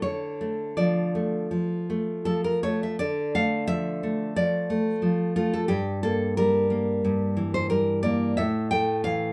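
A romantic solo classical guitar excerpt, passionate and wistful, in which a bright, full-bodied nylon-string guitar sits up front, fingerpicked with a free rubato feel across a register from G2 to G5, moving from Dm through Edim/G at 5.7 seconds to A5 at 8.4 seconds within a moderate studio ambience, cut from a longer piece.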